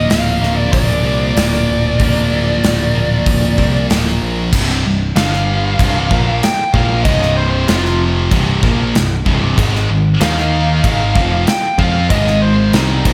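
A straight, driving 4/4 groove is set by an up-front, gated 80s drum kit with tight kick, medium-tuned snare, hi-hat and crash, alongside a punchy, growly picked electric bass, in this menacing hard rock passage cut from a longer piece. Three overdriven and high-gain guitars play the riff together: a biting double-tracked one and a cranked stack sit in the background, while a scooped, bright high-gain guitar cuts through, all treated with slapback echo. A dark, distorted, bluesy lead guitar carries the melody from the start and breaks into a solo at 4.5 seconds, with the whole mix bathed in a concert-hall reverb for a big arena sound.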